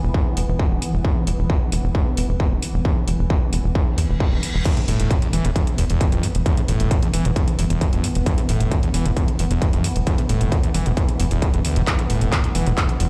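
A screaming, squelchy acid line, distorted and resonant with chorus and tape echo, bursts in at 4.7 s just after a brief reverse cymbal, riding over an overdriven, up-front distorted kick, a tight, punchy sawtooth sequencer bass pumping to the sidechain, a layered kit of crash, handclaps and hi-hat, and a swarming, nasal, detuned drone bathed in its own reverb, driving this industrial, relentless peak-time techno at 133 BPM as if played on a big sound system in a bare room.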